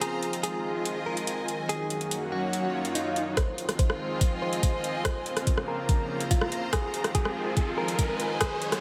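A half-time pulse of metallic hi-hats and rim clicks opens this chaotic, menacing heavy wobble dubstep fragment, where a bright, picked clean electric guitar carries the melody through tremolo, delay and a low-pass filter over a lush, detuned supersaw pad and a rich, bowed symphonic string section, both pumping to the sidechain, before a swell and riser build in the background from 2.7 seconds and a knocking, up-front electronic kick drives the build-up from 3.4 seconds.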